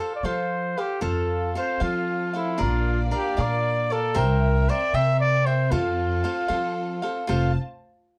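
This Mexican folk piece, with a mariachi flavor, carries a proud, festive mood in 6/8 with a straight feel, taken from a longer performance. A mellow, punchy trumpet with a vintage, classical-style tone sings the solo melody up front from the very start, while a bright, crisp acoustic cavaquinho picks out the accompaniment. A woody upright bass with steel strings enters at 0.2 seconds, played pizzicato and placed prominently in the mix. At 1.0 seconds a rich, focused violin section joins with close, bowed sustained chords colored by vibrato, filling out the ensemble behind the trumpet. The harmony moves from F to Bb, then C7, and resolves back to F. The production is dark, with a moderate studio ambience giving the ensemble a compact sense of space.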